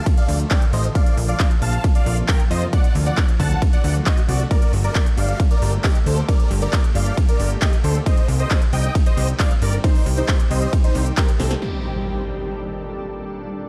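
The electronic kick drum stands out most, punchy and up front, driving this uplifting trance drop at 135 BPM in G minor with an emotional, driving mood. Above it, a huge, thick supersaw lead built from detuned unison sawtooth voices with a sub octave carries the melody between C4 and A5, its sustained notes compressed, sidechain pumping and trailed by a digital delay. A plucky analog bass with a fast-attack filter pluck and a funky, sawtooth-and-square character sits up front in the low register, also pumping against the kick. The big-room dance kit adds a punchy snare, crisp hats, handclaps, ride and crash, all low-pass filtered and tape-warm, with a drum fill at 11.4 seconds. The harmony moves through Dm, Bbsus2, D, Gmadd9 and Cm before an electronic impact lands at 11.6 seconds over a return to Gmadd9, closing this dark, dry-sounding passage cut from a longer piece.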